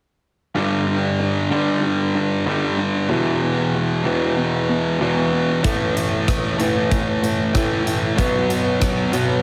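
A bright, compressed fuzz guitar riff with slapback echo sits up front in this anthemic, cathartic quiet-loud alternative rock fragment, over a dark, lo-fi, slightly broken-up electric guitar playing arpeggios through lush chorus and digital delay in the background, and a big rock drum kit with a punchy kick, hi-hat and rim click joins at 5.6 s, all washed in a wet concert hall reverb for a big arena sound.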